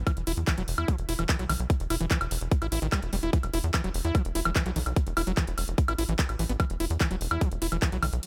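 A tight, up-front electronic kick drives this short, alien psychedelic trance excerpt: a punchy, wave-folded sequencer bass with tube saturation sits beneath it, a squelchy, gritty acid riff with sidechain pumping and digital delay hovers above, and a layered dance kit of handclaps, metallic hi-hats and woodblock rounds out the drums in a digital ambience.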